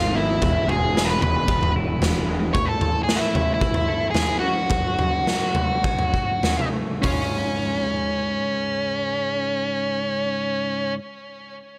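A light studio reverb frames this bittersweet, anthemic cut from a longer quiet-loud alternative rock piece in straight 4/4, moving between 96 and 114 BPM and slowing from 2.5 to 7.0 seconds as the chords pass from E through A and Gbm to Db. Up front, a dark, fuzzy octave-fuzz lead guitar carries the melody through digital delay, while a clean, compressed semi-hollow guitar plays fingered arpeggios in the background, and a growly overdriven picked bass sounds only until 2.5 seconds. A gritty, saturated garage drum kit with a punchy kick and a pumping stone-room sound plays from 0.4 to 7.2 seconds.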